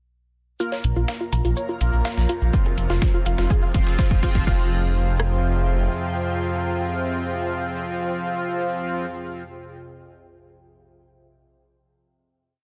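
A tight, detuned arpeggio, edgy sync-sweep polysynth stabs, a gritty sampler-style breakbeat and a grainy tube shaker open this hypnotic, driving melodic techno piece in F minor at 124 BPM, building from 0.6 seconds over Bbm then Fmadd9 as filter sweeps open both synths, a menacing saw bass gallops up front, overdriven metallic house hats, toms and crash pump beneath, an ethereal pad and a resonant phased drone bloom in, and a punchy analog kick with rim clicks drives a drum fill from 2.5 seconds before everything but the drone, pad and polysynth falls away into a final chord from 4.5 to 8.3 seconds, with those three parts sounding until 9.1 seconds.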